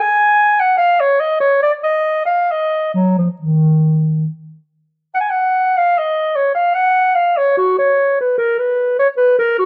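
Light reverb gives this short excerpt a roomy, distant air, though the dark clarinet sits up front as the sole voice. A grave, introspective baroque-style fantasia in 3/4, it moves with rubato at roughly 65-77 BPM, ranging from Eb3 to Ab5. It begins in Eb minor and turns to F# major at 5.1 s before the clarinet stops at 9.7 s.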